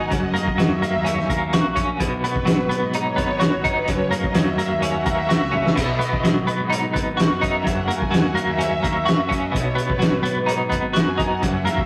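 Psychedelic rock with a kaleidoscopic, hypnotic pull, this short cut from a longer piece rides a straight 4/4 groove as a bright, clean twelve-string electric guitar plays an up-front riff through tremolo while a vintage sawtooth string machine voiced as violas holds slow-attack chords with ensemble chorus and carries a solo line from 0.0 s. Beneath them a fuzz-overdriven fingered bass sits in the background, and a cloth-damped, thuddy drum kit with a fat snare, tight kick and dark, muffled cymbals sounds up front, marking a fill at 5.5 s. Harmony swings between F# and B, and the rough rehearsal-room recording carries tube saturation and moderate studio reverb.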